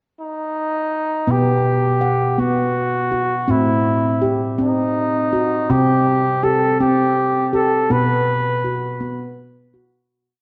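A warm, soft-attacked flugelhorn opens at 0.2 s with a vintage, jazz-styled solo melody of scooped notes and call phrases, touched with delay, over a slow, meditative 6/8 pulse at 54 BPM in B phrygian dominant. At 1.3 s a ringing nitrided-steel handpan enters up front, its sharp finger strokes shaping a dark, smooth arpeggiated ostinato over sustained bass notes while the chords move from B5 through Am and C5 and back to B5. The hypnotic world piece sits in a dusky, wet echo-chamber reverb with small-room ambience and fades out from 7.9 s to 10.1 s.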